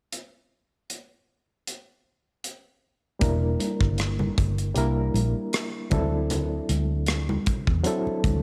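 A barky, reedy electric piano, lightly overdriven with a fast tremolo and a cassette-tape grit, accompanies this bittersweet, cinematic clip of lush 1970s-style soul at 78 BPM with a gentle 16th-note swing. A polished, airy drum kit with a punchy kick, hi-hat and rim click opens alone at 0.1 s. At 3.2 s the piano arrives with a dark, round, foam-muted fingered bass and ringing, medium-tuned congas set back in the room, moving over Em7b5 and then D7, all in a small, lightly reverberant home-cassette sound.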